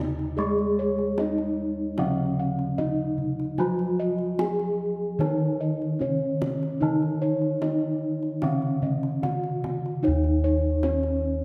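A straight 4/4 pulse at 75 BPM carries this shimmering, ceremonial Javanese gamelan excerpt, where two bronze metallophones with paired tuning and shimmering beats, one struck with padded disc mallets and the other with a band-limited, vintage-sounding wooden mallet, share melody and lower accompaniment while round, beating bossed gongs spin soft arpeggios above and a mid-forward gong bass below, a tight kendang played with soft hands enters at 0.2 seconds, and a moderate concert hall reverb surrounds it all in a dark, warm production.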